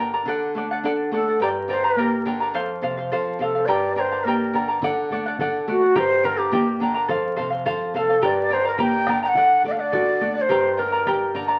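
A fingerpicked charango with shimmering double strings and a full-bodied nylon-string guitar, its finger squeaks audible, open this festive, earthy Andean folk excerpt in a straight two-beat metre, cycling through D, G minor and F. A breathy, wooden large quena enters up front at 1.1 seconds with a crisp, chiffy attack and vibrato to carry the melody, and a deep, dark bombo joins in the background at 4.8 seconds as the section repeats. The sound is bathed in wet studio reverb and the crackle of a very old 78 rpm record.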